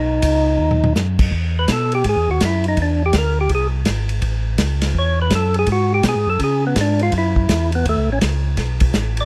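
A close, nearly dry sound puts every part up front in this short excerpt of a soulful, bluesy soul jazz organ trio, swinging in 4/4 at 166 BPM in E major. A fat, percussive tonewheel organ with third harmonic percussion, vibrato, light overdrive and a slow rotary speaker carries the melody, and from 1.3 seconds it takes a solo that runs through the rest of the clip. Beneath it, a second tonewheel organ plays the bass line with a mellow, round, lightly overdriven tone, shaped by chorus vibrato and its own slow rotary speaker. The acoustic drum kit enters at 0.2 seconds with a dark, smooth sound, a tight kick, a medium-tuned snare, hi-hat, ride, crash and toms, and it plays a fill at 0.6 seconds. Under the solo the harmony moves from Emaj7 through Eaug7, A and F#madd9 to F#m7 before the chords drop away at 8.6 seconds.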